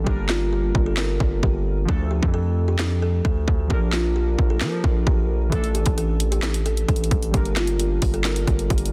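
A dense, heavily limited and dry mix carries this melancholic, hard-hitting trap excerpt at 132 BPM in half-time: a woody, ringing kalimba melody with low-pass filtering and tape echo sits above detuned lo-fi synth keys with chorus, while a saturated, aggressive 808-style bass and an overdriven trap kit of hard-clipped kick, sharp snare, handclaps and bright hats sit up front through Gm, Dm, Bb and Asus4 before Gm returns at 7.3 seconds.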